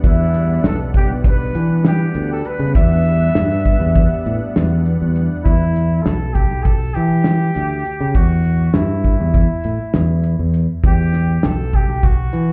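A warm, distant trumpet with light vibrato and tape echo carries the brooding jazz-style melody over a growly, bright fingered electric bass and a cloth-damped, thuddy drum kit with a fat snare in this driving progressive instrumental in 9/8 at 200 BPM in E minor, with a lush, airy detuned pad shimmering with chorus until 5.4 seconds, all heard muffled as if through a wall, bathed in club reverb.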